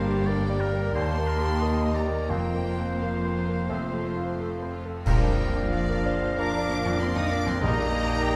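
A clear, open concert grand piano stands up front, carrying the melody with a deep bass across this passionate, lyrical romantic movement for piano and orchestra, cut from a longer piece and shaped with rubato in 4/4. A lush violin section sings the melody high above with warm vibrato, while a clear oboe, a pure, distant flute with crisp attack, and a focused background violin section weave second lines, joined at 0.9 seconds by a very quiet, bright clarinet. Beneath them, a very quiet viola section and, from 0.9 seconds, a soft-edged bassoon fill in accompaniment, a roomy French horn section holds sustained chords in the background, and rich cello and distant double bass sections anchor the low end. Percussion enters at 2.3 seconds with bright, close cymbals, a cymbal swell and concert bass drum, followed by round, soft-mallet timpani in the background. At 5.1 seconds the music arrives on a Bb chord with a band accent, as a very quiet, vintage-toned trombone section adds sustained chords and a smooth-topped trumpet section plays stabs, all set in a moderate recital hall reverb.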